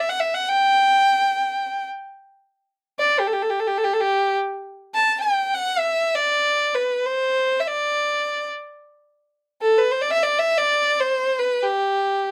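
A rich, smooth solo violin, bowed by one player with vibrato and set up front in light reverb, carries this festive Arabic maqam ensemble piece in free time in G maqam ajam, ranging from G4 to A5 over a brief 12.3-second passage cut from a longer performance.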